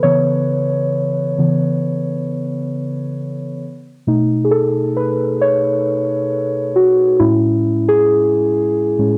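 Nostalgic and reflective, this short hip hop fragment, cut from a longer piece, settles into a relaxed, swung groove in four. A single part carries everything: muted, felt-like synth keys playing solo from 0.0 to 9.2 seconds, ranging from A2 to C#5. Their tone is soft and dark, blending triangle and sawtooth waves with a noise layer, a fast attack and decaying notes. Chorus, a low-pass filter and a filter sweep colour the keys, which sit up front in an intimate, moderately reverberant studio space. The harmony moves from C#m7 to B9 at 3.6 seconds and on to Amaj7 at 7.2 seconds, while a cassette-tape character gives the recording a worn, hazy feel.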